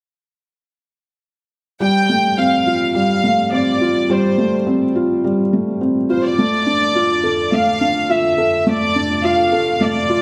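A straight 4/4 pulse at 105 BPM carries this melancholic, moving electronica fragment, where a felt-muted upright piano with a dark, intimate tone plays a delayed riff up front, a reedy, gut-string studio violin section sings the melody with light vibrato, and a lush, detuned unison pad with chorus and phaser holds sustained chords in the background, all three playing from 1.8 to 10.2 seconds over Fadd9 moving to Dm/F in a concert hall reverb.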